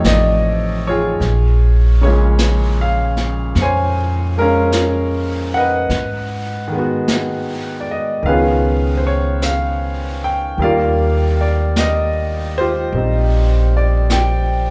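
Swung eighths drift at a slow 51 BPM in 4/4 through this wistful, intimate jazz ballad fragment, which moves from F7 through Bbm9, Abm7 and Db9 before settling on Ebmaj9 at 10.6 seconds. A bright, brilliant baby grand piano sits up front with its action noise audible, while a woody pizzicato upright bass holds the low end close by. A vintage brush kit on snare and hi-hat stays distant and roomy with a rolled-off top, and the whole trio rings in a recital hall's moderate reverb.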